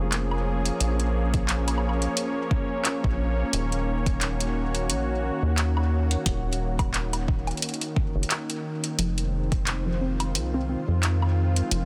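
A chorused, detuned analog pad with vintage 12-bit sampler grit and a rubbery, resonant square-wave acid bass open this glitchy, cerebral IDM excerpt at 88 BPM with a light 16th-note swing, joined by a dry analog drum machine of handclaps, metallic hi-hats and woodblock, a deep electronic kick from 1.3 seconds that briefly drops out at 8.3 seconds, and, over shifting Bbm7, Ebm7 and Fm7 chords, a lo-fi, cassette-worn pluck with dub echo from 9.0 seconds followed by a faint bubbling stepped-filter texture, all in a dense, heavily limited mix.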